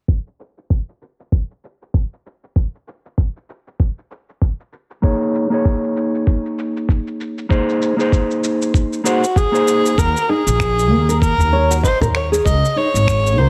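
A small room with light reverb and a low-pass filter gives this earthy, organic downtempo excerpt a hazy, intimate sound, and a filter sweep runs through its opening 10 seconds. A gritty, overdriven sampler-style soul kit with finger snaps, shaker and toms sits under an up-front, thumpy electronic kick; both are compressed and carry a swung sixteenth-note feel from the start. At 5.0 seconds, a dark, clean, finger-played electric guitar enters with delay and sidechain pumping over chords moving from Eb5 to Ab. A bowed kamancheh then takes the melody, close and up front, its soft attack, vibrato, portamento and airy bow trailed by digital delay. Around 10.0 seconds, a growly, woody pizzicato upright bass and a thumb-plucked classical nylon-string guitar with delay arrive, while a very quiet, dry udu adds a brief touch of hand percussion.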